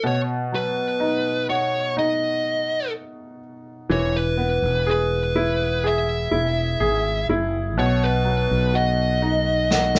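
In a straight 4/4 pulse, this tender, hopeful pop ballad, cut from a longer piece, sets a clear, short-sustaining baby grand piano beneath a dark, compressed fuzz lead guitar melody over B and Eadd9 chords, with a growly fretless electric bass entering at 3.9 seconds and a distant, roomy snare drum played with bundle sticks adding a fill at 9.7 seconds, the band heard playing live together in one studio room.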